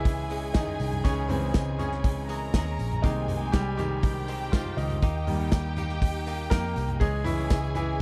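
Dry and anthemic, this short excerpt of hopeful piano-driven pop centres on a bright, brilliant, polished concert grand with deep bass and short sustain, taking the solo across the full 8 seconds over chords moving from Dbm through Abmaj7/C and Eb. A punchy modern drum kit with a pumping room sound and medium-tuned snare sits up front beside a dark, round, foam-muted picked bass, while a lush, distant violin section with expressive vibrato carries a second line. A clean, compressed, direct-recorded electric guitar riff and a jingly tambourine stay in the background.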